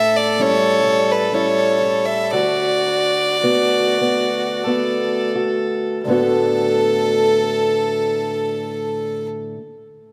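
A close, up-front fiddle carries the melody of this Celtic slow air, its earthy tone shaded by light vibrato and an airy bow, singing between A4 and E5. Behind it, a distant erhu traces a second line with nasal color and portamento gliding through its narrow range. A fingerpicked acoustic archtop guitar sits up front as accompaniment, reaching from deep bass notes up to F#4 and moving from an A7 chord to D6. The feel is pastoral and tender in D major and 3/4, played rubato at roughly 41-65 BPM, with the pace slowing through the first 6.1 seconds before a second section begins. A moderate concert hall reverb gives the trio a spacious glow, and the fiddle and erhu stop at 9.3 seconds while the guitar rings on to 9.6 seconds in this fragment cut from a longer piece.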